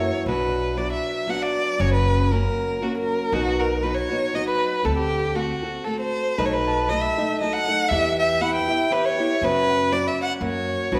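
Mariachi-style Mexican folk in a passionate, dramatic 3/4 at 118 BPM with a lightly swung lilt, where an up-front bowed violin sings the melody with vibrato, portamento and a soft attack over a small, fingerpicked nylon-string guitar and a woody pizzicato upright bass, while a ringing concert harp adds background arpeggios for the opening 1.3 seconds and again from 6.4 seconds, heard in the reverberant space of a church or concert hall as the chords move from Bm through B7 and Em to F#sus4 and F#.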